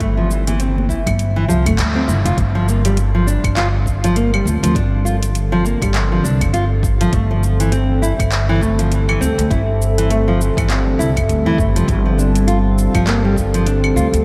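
Fingerpicked, full-bodied nylon-string guitar arpeggios with subtle chorus and diffuse ambient delay, a woody, growly pizzicato upright bass up front, an overdriven deep house kit of claves, handclaps, metallic hi-hat and shaker, and a punchy overdriven electronic kick in the background open this earthy, dreamy organic downtempo excerpt at 101 BPM with a swung 16th-note feel, while very quiet ringing congas and bongos play until 2.4 s, a band accent lands at 1.8 s, and a dark, warbling, lo-fi tape-like pad of detuned sustained chords with chorus and sidechain pumping drifts over Fmaj7/G and G7(no3) harmony, the whole mix soaked in a cathedral reverb.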